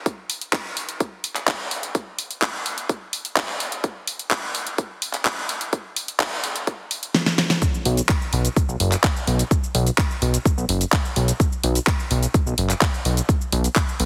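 A fat, detuned sawtooth bass arrives just after the drop, at 7.9 seconds, sitting up front with a fast attack, sustained notes between F#1 and B1, a filter sweep in its tone, and sidechain pumping that gives this progressive house excerpt its driving pulse. Before that, the first 7.6 seconds form a build-up carried by a punchy, layered electronic kick and a pop drum kit of handclaps, shaker, a fat snare and warm hi-hats, both re-recorded in a small room and placed close to the listener. A drum fill from 7.1 seconds leads into the drop, after which the bass joins the drums at a steady 127 BPM in straight 4/4. A moderate, lush hall reverb lends a dreamy haze, while heavy multiband compression gives the whole mix a dense, radio-ready finish. Cut from a longer piece, it plays as a short, polished slice of club music.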